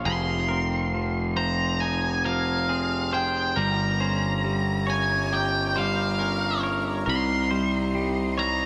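Rock in F minor at a slow 69 BPM, this cathartic, cinematic excerpt sets a dark, distorted octave-fuzz lead guitar melody and a growly, overdriven fuzz bass up front over two bright, twangy background guitars arpeggiating with slapback echo and digital delay, while a lush, bowed symphonic string section enters with sustained chords at 3.6 seconds, all within a big arena sound and concert hall reverb as the harmony moves from Fm7 through Gdim to Cm.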